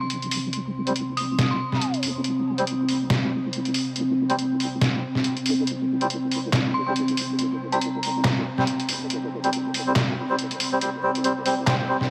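A brooding, heavy deep dubstep excerpt at 140 BPM in half-time opens on an eerie, warbling FM bell with dub echo, over a slow-attack sawtooth pad and a wobbling sine bass in the background. Gritty, pitched-down sampler drums with handclaps, hi-hat and a medium-tuned snare sit up front in studio reverb from 0.1 seconds, and a reedy, breathy melodica plays stabs through a filter sweep and dub echo from 0.9 seconds. The bell returns at 6.7 seconds as the passage builds within a light digital ambience.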